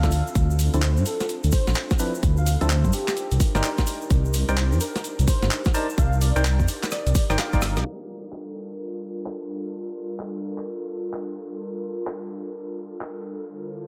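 A deep, rumbling detuned saw bass sits up front in this moody, soulful two-step UK garage excerpt, joined by a tight, layered electronic kick, a gritty, overdriven breakbeat kit of handclaps, hi-hat, rim click and snare, a grainy, distant egg shaker, hollow organ stabs with chorus and tape echo under a filter sweep, a breathy pad with sidechain pumping, and a soft, dreamy lead with tape echo, the mix soaked in lush hall reverb. The bass, kick, lead, stabs and shaker drop out by about 7.8 seconds, leaving the filter-swept drums to carry on until about 13.1 seconds and the pad until 13.9 seconds.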